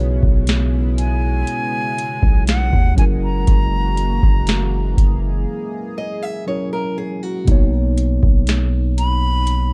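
A dark, smooth production bathed in digital ambience frames this short excerpt of tender contemporary R&B in B major, moving at a slow 60 BPM in a straight 4/4. Up front, a booming analog drum machine with a deep kick, crisp snare and metallic hats carries vintage 12-bit sampler grit, while a long, sine-toned 808-style bass with a fast attack holds down the low end. A mellow tine electric piano plays clean accompaniment alongside a shimmering, detuned pulse-width pad whose chorused chords pump under sidechain compression until the pad stops at 7.5 seconds. From 1.0 seconds, a breathy silver concert flute carries the melody in an expressive, close-miked straight tone with tape echo. At 6.0 seconds, during the break, a boxy, fingerpicked ladder-braced acoustic guitar briefly adds arpeggios, also with tape echo, as the harmony moves from E6/B through F#9 to Bmaj7.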